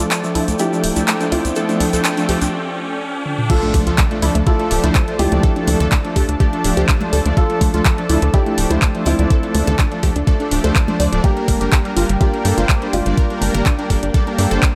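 Progressive house with a bittersweet, driving mood, cut from a longer piece and set in a light reverb. A dark, mellow grand piano carries the melody through a low-pass filter and dub echo, over a thick, lush pad with chorus and slow-attack chords that pump against the sidechain. A detuned unison pluck plays bright, wave-folded arpeggios in the background, and a smooth, full-bodied supersaw adds stabs with dub echo. A punchy, tight sequencer bass drives underneath. The opening build-up has a very quiet riser, filter sweeps on the pluck and supersaw, a grainy, band-limited egg shaker, and a pop drum kit of overdriven crash, handclaps, hi-hat and toms; a brief break from 2.5 s ends in a drum fill. The drop lands at 3.5 s with a very quiet impact, a knocking, up-front electronic kick and very quiet, close, dry congas, and the harmony shifts from D minor to G minor at 11.2 s.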